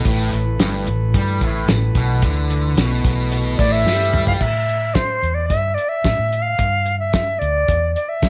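A straight 4/4 groove at 110 BPM from a cloth-damped, thuddy drum kit with a fat snare and dark cymbals anchors this hypnotic, mysterious psychedelic rock fragment, with a round, foam-muted fingered electric bass underneath throughout. At first a double-tracked fuzz guitar riff, soaked in distortion and phaser, sits up front over mellow, clean combo organ chords and a jingly tambourine in the background, until a drum fill leads into the second part at 4.4 s, where guitar and organ drop out. From 3.6 s a bright, reedy concert flute with vibrato and slapback echo carries the melody to the end, moving over A5 and then G5 harmony in a small room with light reverb.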